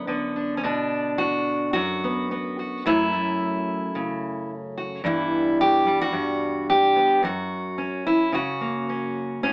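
A lone fingerpicked steel-string acoustic guitar opens this brief folk fragment, its jumbo body giving a full-bodied, up-front tone with audible finger squeak as it moves freely in rubato time. The melancholic, wistful harmony passes from Bm through F#m and Em/G before arriving on F#. A moderate studio reverb surrounds the playing, and the whole recording carries the filtered character of an AM radio broadcast.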